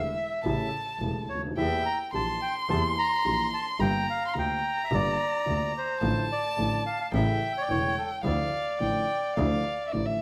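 This short excerpt sits in a large studio with moderate reverb, giving a roomy but focused sound to a tense, dramatic tango that pushes and pulls in a rubato feel. A reedy, airy bandoneon carries the melody up front from 0.2 to 9.9 seconds, set in its own plate reverb. Alongside it, a bowed violin, also up front, plays a second line with expressive vibrato and portamento, its tone warm and its upper register silky. A dark, mellow upright piano accompanies throughout, its worn, woody tone slightly detuned and intimate, with the action noise audible. A bowed double bass anchors the low end with a clear, intense sound and light vibrato, as the harmony moves from A7 through Edim, Gm7, Dm/A and A before settling on Dmadd9.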